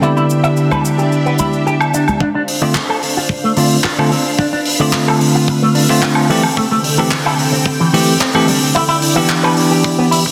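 Sleek and groovy, this nu-disco excerpt opens on a bell-like tine electric piano, up front and clean, carrying the accompaniment through a filter sweep while a lush string machine holds sustained chords beneath it with a vintage, sawtooth shimmer and slow-attack ensemble chorus. An electric guitar with an envelope filter plays a twangy, picked riff, its compressed tone colored by chorus and digital delay. Bright, close cabasa and congas add percussion at the start, giving way at 2.2 seconds as a dry, tight kick drum arrives and the section shifts into a build-up. A damped 70s drum kit, dry and up front with handclaps, hi-hat and woodblock, joins at 0.7 seconds, while sidechain pumping lends the electric piano and strings a breathing motion. The harmony moves from Em7/D to Dm7, Am7/D and back to Em7/D, all set in a moderate hall reverb within a dense, heavily limited modern master.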